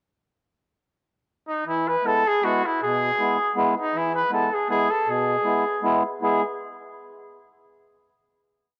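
A clear, distant trumpet plays a solo, motif-based song melody in classical style from 1.5 seconds, over a reedy, round, close-miked accordion that enters at 1.7 seconds with dry off-beat triad chords, in this short, festive and bouncy alpine folk dance-band piece in E major at 157 BPM in 3/4 with a light swing, captured as a home cassette recording soaked in a wet spring reverb.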